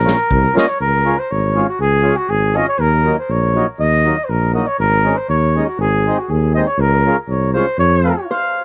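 A warm flugelhorn with light vibrato carries the festive, jolly melody of this short alpine folk dance clip, its classical-style tone given a distant, roomy cast by tape echo, while a smooth-topped tuba holds the bass and a reedy, full accordion fills in the accompaniment at a straight 120 BPM in 2/4, Db major. An unplugged drum kit with a punchy kick and medium-tuned snare, played with bundle sticks, sounds only between 0.1 and 0.7 seconds. The band stops at 8.3 seconds as a ringing, thumb-plucked Celtic harp note joins the flugelhorn to close the clip, all captured in a dry, close 1970s-style studio sound.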